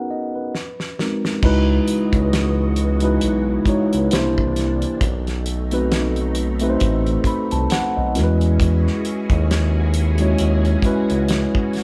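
A mellow, clean tine electric piano opens this sultry, smooth R&B and neo-soul excerpt, and a soul drum kit enters at 0.5 s with a fill, bringing a fat snare, tight kick and dark cymbals from a small room. A smooth synth bass arrives at 1.4 s and sits up front beside the piano as the harmony moves through lush extended chords such as C#m11 and B7b9 before settling on E69. A silky, vintage string machine joins at 1.8 s with slow-attack sustained chords coloured by phaser and ensemble chorus, and light reverb gives the sense of a band playing together in one room.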